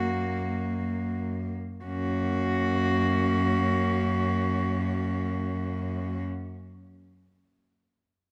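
In free time that slows over the first 1.9 seconds, this serene, lyrical classical excerpt for cello ensemble rests on F# major, with a pure, floating bowed cello singing the melody up front over a lightly vibrato second cello in the background, a dark, smooth-topped accompanying cello, and a rich bass cello, all four playing sul tasto with soft attacks in a moderate concert hall reverb.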